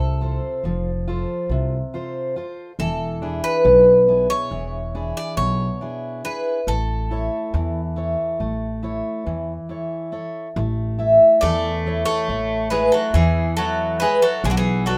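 Greek folk from a bouzouki band, calm and peaceful, moving at 139 BPM in a straight 9/8 in A major, cut from a longer piece and set in a wet studio reverb. A bright, metallic bouzouki with doubled, partly octave-strung courses carries the melody up front, over a full-bodied jumbo steel-string guitar picking the accompaniment with audible finger squeak and a woody pizzicato upright bass, as the chords pass from F through E7 to A. At 10.6 seconds the music shifts into a new section, and at 11.4 seconds a second bouzouki joins with a low supporting line, before the harmony turns to Bm at 14.4 seconds.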